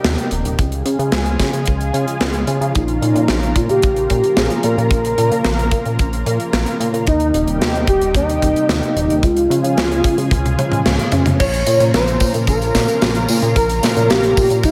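A straight 4/4 synthwave groove at 111 BPM drives this short, nostalgic cut in Bb dorian, with a tight metal drum kit of bright cymbals, hi-hat, tambourine, toms and a medium-tuned snare sitting up front under gated reverb, joined at 0.6 seconds by a polished, airy kick. Beneath it, a chorused synth bass mixes pulse, sawtooth and triangle tones with a plucky filter and a glossy, retro edge, while a silky analog string pad holds detuned sawtooth chords through ensemble chorus, pumping against the beat with sidechain compression. At 2.8 seconds an expressive synth lead enters as the melody, smooth and dark with vibrato, chorus and delay, carrying the loudest voice in the mix over chords that cycle through Eb6, Db and Bbm. A drum fill and a band accent lead into a new section at 11.4 seconds, where a very quiet FM bell adds a pure, gentle second line touched by phaser. The whole piece sits in a light small-room reverb, with a slightly flat tuning lending the retro palette a hazy tint.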